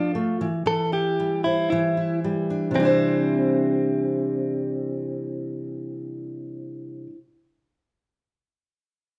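A fingerpicked, full-bodied dreadnought acoustic guitar and a clean, compressed, direct-recorded electric guitar carrying the melody open this carefree, sunny acoustic pop clip together at a straight 115 BPM in C major, both sitting up front in a large studio's moderate reverb as the band plays live in one room, with the harmony moving from C/E to Cadd9 at 2.8 seconds.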